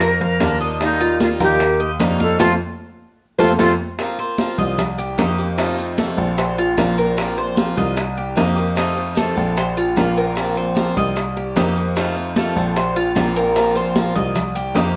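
A large studio's moderate reverb and a softened top end frame this warm, relaxed Cuban son and guajira excerpt in a straight four. A breathy metal flute with vibrato, lifted highs, a soft attack and an unsteady quality carries the melody over a fingerpicked flamenco guitar second line in the background, and both stop at 3.7 seconds, as a drum fill and band accent close the opening passage. Beneath them, a dark, worn baby grand piano sits up front on the bass, mellow and intimate, with audible action noise. A bright, boxy picked swing-style acoustic guitar supplies accompaniment, while a metallic Cuban tres with double strings, some of them octave-doubled, plays arpeggios throughout. In the background, tight, compressed bongos played with soft hands and thick-skinned, high-tuned congas struck with hard hands blend with grainy, saturated maracas, as the harmony settles into a repeating Bbsus2, Cm7 and F7 cycle.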